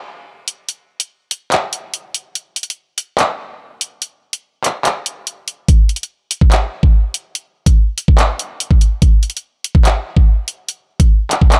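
Ominous and dark, this hip hop excerpt at 144 BPM in a half-time 4/4 feel features only an electronic drill drum kit entering at 0.5 seconds, its knocking kick, bright hi-hats and handclaps sitting up front in a dry, gritty hardware recording, with a break running until 5.7 seconds.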